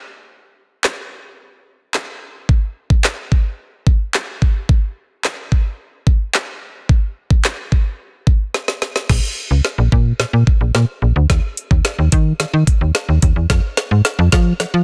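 A dry, dense and heavily limited dance-pop cut, driving and confident in a straight 4/4, opens on an up-front electronic drum kit with a knocking kick, woody snare, metallic hats, handclaps and crash, fills from 8.5 seconds, and at 9.1 seconds brings in a snappy, slap-like FM bass with a fast, metallic attack and sidechain pumping as the music builds until the drums stop at 14.7 seconds.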